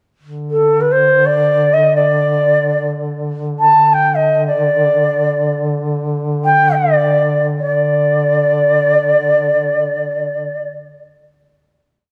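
In free time, slowing from 3.8 s and settling on a final note at 7.6 s, this passionate Turkish makam piece in D makam hicaz places an airy, reedy end-blown ney up front, its ornamented modal melody ranging from A4 to A5 with vibrato and a soft attack, over a mellow folk-style duduk drone held on D3 with its own vibrato, the pair set in a moderate scoring-stage reverb within a dark production.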